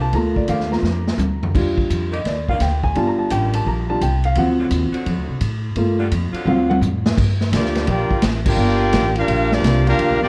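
Worn, warbling old-cassette sound in a moderate studio reverb frames this dramatic, sultry big band swing in G minor at 171 BPM, where an intimate concert grand with audible action noise and deep bass solos over edgy, vibrato-laden saxophone chords, a woody, thumpy pizzicato upright bass and a roomy drum kit with a punchy kick that throws in fills, until a clear trumpet section in plate reverb takes the melody at 7.5 s with a tight trombone section on a second line and the band hits an accent at 8.4 s.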